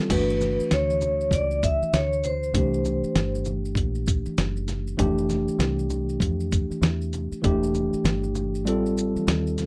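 A dry, close 1970s-style studio sound frames this nocturnal, cool jazz-hop excerpt at 98 BPM with a swung feel, where a gritty, tape-warm sampler-style drum kit with thumpy kick and fat snare sits up front beside a worn, slightly out-of-tune tine electric piano with light overdrive, a ringing vibraphone with fast motor vibrato carries the melody until 3.4 s, a dark, round, foam-muted fingered electric bass anchors the low end, maracas and congas murmur in the background, and the kick drops out at 8.7 s over chords moving from Gmaj9 through C13, F69 and A7sus4/E to F9/A.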